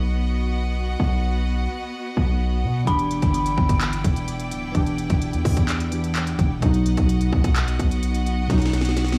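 A half-time trap groove at 128 BPM in E minor drives this menacing, brooding hip hop excerpt, where bowed chamber strings hold bright, intense chords over a punchy, heavy 808-style bass from the start, warbling lo-fi synth keys with chorus and a low-pass filter join at 2.8 seconds, an eerie, inharmonic FM synth bell with chorus and digital delay rings briefly at 2.9 seconds as the trap kit of hard-clipped kick, sharp snare, crisp hi-hats and handclaps enters up front, and a drum fill closes it at 8.5 seconds amid vinyl crackle.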